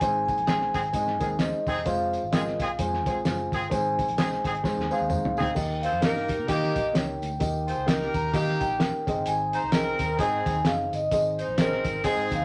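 Danceable and uplifting, this excerpt of uptempo 1960s-style soul swings along as a ringing vibraphone with soft mallets carries the melody over a dark, woody upright piano, a round, foam-muted picked electric bass, a muffled, cloth-damped drum kit with a fat snare that plays a fill from 4.6 to 5.6 seconds, a jingly tambourine in the background, and a clear horn section that enters at 0.5 seconds with a second line, all set in moderate studio reverb.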